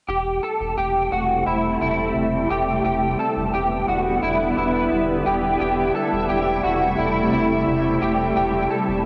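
A slightly broken-up electric guitar opens the excerpt with picked arpeggios, up front and coloured by ensemble chorus and analog delay, over a deep, round sub bass that holds a low E, while a shimmering, detuned pad with an octave-up glow enters at 0.7 s to sustain chords through chorus and its own reverb. The harmony sways between Am7/E and Em7 in this haunting, ethereal dream pop fragment, cut from a longer piece. A lush hall reverb and the soft, band-limited haze of a home cassette recording wrap the sound, with both guitar and pad carrying tape colouring.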